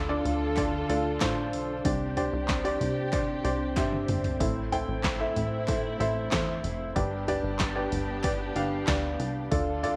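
A dark upright piano opens this bittersweet, dramatic piano-driven pop excerpt, its woody, slightly detuned tone sitting up front with audible action noise, while a lush studio string section holds dark, bowed chords beneath it with vibrato and a soft sul tasto colour. A plucky analog bass enters at the same moment, nasal and funky with a sawtooth edge, fast attack and decaying filter pluck. At 0.3 seconds a punchy analog drum machine arrives with kick, snare, hi-hat, toms and handclaps, re-recorded in a large room, and it plays a fill from 3.8 to 4.4 seconds. A very quiet, distant group handclap adds a crisp, human layer from 0.6 to 9.0 seconds. The harmony moves from Dm through Csus2 and Am to G over a straight 4/4 pulse, all set in light studio reverb.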